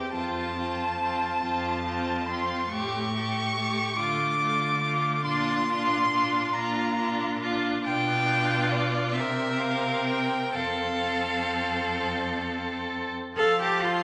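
This is a lyrical, tender slow movement for string quartet in 6/8, played with a flexible, rubato feel and cut from a longer piece. The first violin carries the melody high in its register with a clear, focused tone and bowed vibrato, sitting up front in the balance though with a slightly distant quality. The second violin weaves a supporting line beneath it, similarly bowed with vibrato and placed forward. The viola fills in the accompaniment with a rich, expressive sound, sliding between notes with portamento from a more distant position. The cello enters at 0.1 seconds with a focused, bowed bass line that also sits near the front. The harmony moves from F through A7, Dm, Bb, G7/B and C7 before settling back on F at 10.6 seconds, all bathed in the reverberant bloom of a recital hall.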